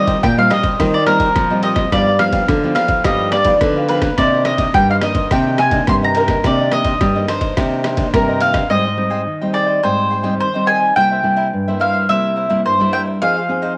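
Samba and choro in C minor at 106 BPM, lively yet yearning, with an up-front, woody, double-strung mandolin picking the melody over crisp cavaquinho and small, fingerpicked nylon-string guitar accompaniment, these three carrying a cassette-tape tint, while a classical nylon-string guitar with old strings plays the bass line and a muffled, pitched-down, compressed trip hop sampler-style kit of thumpy kick, ride cymbal and rim click adds overdrive, both dropping out by 8.7 s as the harmony shifts to Abmaj7, all within a homemade cassette recording with small-room ambience and light reverb.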